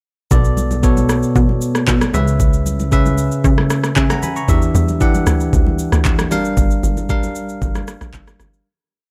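Deep and late-night, this short amapiano piece at 115 BPM pairs a bright, bell-like tine electric piano pushing spread chords with short fills, an up-front overdriven afro-pop drum kit with a knocking kick, steady shaker, handclaps and syncopated rim clicks, and very quiet, ringing congas, while a plucky sawtooth bass plays a dotted figure until 4.4 seconds before a tight, punchy log drum bass takes over at 4.5 seconds with syncopated, sliding bursts, all in a dark, dry production that fades out from 6.6 seconds.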